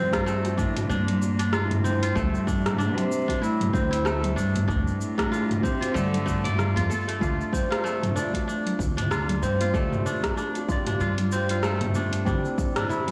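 Organic downtempo in D minor at 95 BPM, this meditative excerpt moves in 4/4 with a gentle swing on the sixteenths, its harmony resting on Dmadd11 and Cadd9/D. A dark, bowed cello carries the melody from the start with a soft, floating sul tasto tone and digital delay, giving way at 7.2 seconds to a worn, barky tine electric piano that plays accompaniment through a combo amp, colored by phaser, tape echo and sidechain pumping. Throughout, a bright, crisp kora rings out up front with fingerpicked arpeggios trailed by tape echo. Beneath it, a woody, thumpy pizzicato upright bass on gut strings enters at 0.9 seconds, thickened by tube saturation and sidechain pumping. The rhythm comes from an overdriven deep house kit with metallic hi-hats, rim click, shaker and toms, a deep layered electronic kick, and very quiet, soft-handed bongos and congas. The whole recording sits in a wet recital hall reverb and sounds blown-out and overdriven.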